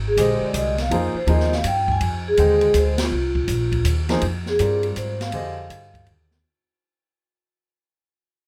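Hypnotic and cool, this short modal jazz excerpt swings in a brisk 3/4 at 163 BPM, cut from a longer piece and resting on a single Fm11 chord. An upright bass, woody and up front with steel strings plucked pizzicato, anchors the low end from the very start. A vibraphone played with medium mallets and its motor off carries the melody in a metallic, ringing voice with a boxy small-room colour. A warm grand piano adds accompaniment, while an open acoustic drum kit with dark cymbals, a high-tuned snare and a boomy kick sits low in the mix on hi-hat, ride, snare and kick. The band hits an accent at 2.9 seconds, and from 4.2 seconds a new section begins as the music fades out within a moderate club ambience.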